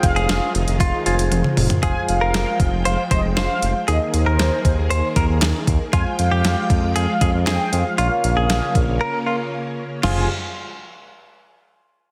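Synth-pop with a driving, nocturnal mood, this short excerpt from a longer piece moves at 117 BPM in a straight 4/4 and sits in F minor, with chords shifting from Fm7 through Fmadd9, Ebsus4 and Bbm. A mellow synth brass carries the melody, its detuned, round tone coloured by chorus, vibrato and tape echo, while a twangy, directly recorded clean electric guitar picks a second line from 0.2 seconds, bathed in spring reverb and tape echo. Underneath, a smooth, nasal synth bass sits up front beside a clean 12-bit drum machine whose thumpy kick, medium-tuned snare, handclaps, hi-hat, toms and crash are overdriven and re-recorded in a large room. In the background, a bell-like tine electric piano supplies accompaniment and a shimmering string machine of violins holds slow-attack chords through its ensemble chorus. A drum fill arrives at 1.3 seconds, and a break from 9.0 to 10.0 seconds precedes the return to Fmadd9, all within a dense, heavily limited modern master with light reverb.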